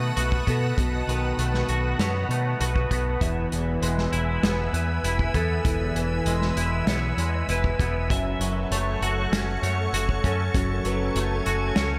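Post-rock at 98 BPM in a straight 4/4, euphoric and soaring, where a calm, detuned organ-like pad with slow attack and ensemble chorus holds bright sustained chords over B7, E and F#m, while an up-front, clean, fingered twangy electric guitar with chorus and analog delay and a bright, slightly broken-up second guitar in the background, also delayed, play arpeggios above a dark, round, punchy picked bass and a loose acoustic indie drum kit with a tight kick and rolled-off top that enters at 0.2 s, all bathed in a dreamy, reverb-soaked ambient space.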